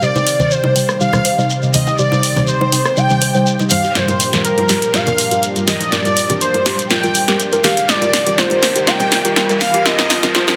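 A velvety synth lead with chorus and dub echo opens this bittersweet progressive house fragment over a lush bowed violin section, a smooth analog pad, a soft round pluck arpeggio, a deep mellow chord stab with phaser and a grainy shekere, as close, dry bongos and congas and a punchy, up-front deep house kit join almost at once, filter sweeps drive the build-up, a drum fill begins at 4.0 seconds and a riser enters at 6.5 seconds under a huge ambient reverb and a dense, heavily limited master.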